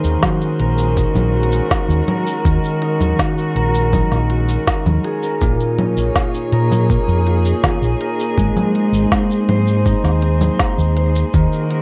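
A ringing concert harp sits up front, its thumb-plucked arpeggios spread from Bb2 to C5 and trailed by a digital delay, in this delicate, autumnal folktronica piece in Eb dorian at 81 BPM in a straight 4/4. Beneath it, a fingered electric bass plays a dark, round, punchy line that is amped and close, while a distant string quartet, one player per bowed line, holds smooth chords with vibrato, colored by a vintage 12-bit sampler grit. The organic electronic drum kit brings congas, shaker, crisp hi-hat and a woody snare, all with a tape-warm, produced feel re-recorded in a small room. A sampler-style electronic kick joins at 0.2 seconds, compressed, pitched down and muffled into a thumpy hit. The harmony moves from Ebm to Bbm at 5.4 seconds and settles on Ab at 8.4 seconds, all under a light reverb, in this short passage cut from a longer piece.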